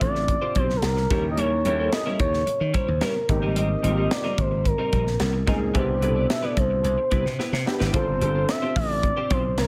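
From the first beat, an upbeat, breezy 1980s jazz-funk pop groove at 110 BPM unfolds, with a smooth, soft-attack sawtooth synth lead singing the melody with vibrato and chorus over punchy, growly slap bass and a crisp fusion drum kit with a high-tuned snare, the whole kit carrying gated reverb. Beneath them, an intimate grand piano with audible action noise plays chords moving from G7sus4 through Eb7b9, Abmaj9 and Cmaj7, while a bright, twangy twelve-string electric guitar plays a clean, compressed riff colored by tube saturation and ensemble chorus. A drum fill at 7.4 seconds leads back to G7sus4 at 7.9 seconds, all within a small room's light reverb.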